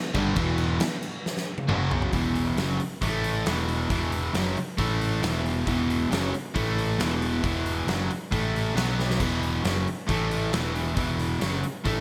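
A bright, plate-reverbed 1980s-style studio sound frames this driving, menacing hard rock fragment at 136 BPM in 4/4, where a very quiet, flute-like pad holds mellow chords until 2.1 seconds alongside a chorused, double-tracked overdriven electric guitar tucked in the background, while an up-front cranked stack guitar and a warm overdriven semi-hollow guitar pound out picked riffs over E5, A5 and B5 power chords, a growly fingered electric bass and a huge arena drum kit with a fat snare, punchy kick and gated reverb that rolls through fills at 1.3 and 9.0 seconds.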